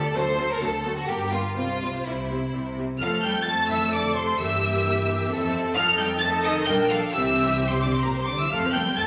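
In a rubato triple metre, this quick, graceful and spirited classical-period passage for string orchestra sets a lush, up-front violin melody with a smooth top against a distant second violin line, a viola section entering at 0.2 s with even accompaniment, and a close, focused bass of cellos in the background and double basses, all bowed with vibrato in a wet recital-hall reverb, moving from D and Gm through F, Bb and C to settle on F at 8.5 s.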